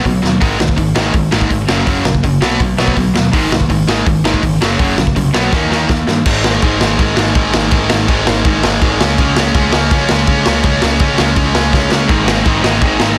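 Punk rock with a rowdy, rebellious energy, this short excerpt drives forward in a straight, fast four. A distorted electric guitar sits up front hammering out a bright, overdriven picked riff from start to finish, while a cranked stack guitar plays a riff of its own further back in the mix, dropping out at 6.2 seconds and returning at 12.1 seconds. Underneath, a growling picked electric bass adds a direct, amped, overdriven low end. The raw garage drum kit is gritty and saturated, with a punchy kick, a medium-tuned snare, a rolled-off top and a pumping small-room sound, and it fires off fills that carry the music into its second section at 6.3 seconds. Light reverb and a dense, heavily limited master keep the whole thing loud and tightly packed.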